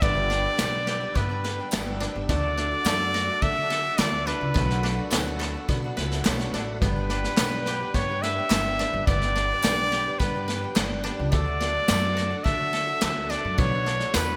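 This hopeful, nostalgic fragment of indie folk opens with nearly the full band at once. A trumpet with light vibrato carries the melody up front, its line trailed by a delay, over brushed drums with a punchy kick and gated reverb. Pizzicato upright bass on gut strings gives a woody, thumpy low end. A picked twelve-string acoustic guitar shimmers through lush chorus in the background beside dry koto arpeggios played with fingerpicks. A dark, slightly detuned upright piano with audible action noise and a reedy tonewheel organ holding sustained chords through a slow rotary speaker sit very quietly beneath, while crisp group handclaps and a jingly tambourine join at 0.6 seconds. The chords move between G, D and Bm7 in a straight 4/4, and the bright 1980s-style digital production sets the band in a moderate plate reverb.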